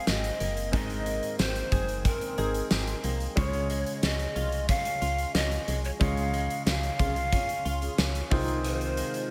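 A straight 4/4 groove at 91 BPM in Db major drives this nostalgic, glossy 1980s-style pop fragment, where a big rock drum kit with a fat snare, punchy kick and gated reverb sits up front beside a round, dark FM bass, while breathy cane pan pipes with a soft attack, chiff and digital delay carry the melody over a clear baby grand piano and a bright, compressed, direct-recorded clean electric guitar riff with analog chorus, and a band accent from 6.0 s brings in detuned sawtooth synth brass stabs at 7.0 s before a bold analog pad with tremolo enters with sustained chords at 8.6 s.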